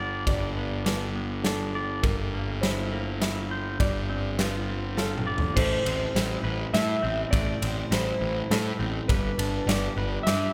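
A felt-muted upright piano, a twangy electric guitar and a fuzzy, overdriven picked bass open this soaring, cinematic post-rock excerpt together, moving at 102 BPM in a straight 3/4 over chords from Gmaj7 to C7/G and F6/G. The piano sits in the background, dark and intimate with thick felt and audible action noise, while the clean, compressed guitar picks arpeggios above the bass, which sits up front with a gritty fuzz edge. A big rock drum kit joins almost at once, up front and punchy, with bright cymbals and a medium-tuned snare, and a drum fill from 5.0 to 5.6 seconds leads into the second section. At 5.6 seconds a clean lap steel guitar enters with a slide melody and volume swells as the harmony moves to Amadd9 and then settles on G. The whole piece rings in a church or concert hall with a moderate reverb tail, giving the band a spacious, cinematic glow.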